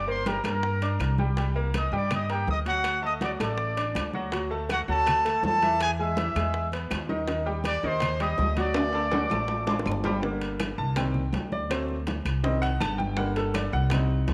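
Set in a small room with moderate echo chamber reverb, this driving, fiery salsa at 163 BPM puts a clear, tight trumpet section with light vibrato up front on the melody, alongside a dark, thumpy pizzicato upright bass on gut strings and a brilliant, worn baby grand piano with audible action noise, while damped congas and high-tuned bongos sit in the background with distant, ringing metal-shell timbales and very quiet woody claves; the trumpets drop out at 9.8 s, a drum fill runs from 8.8 s, and the piano takes a solo in G harmonic minor from 10.2 s.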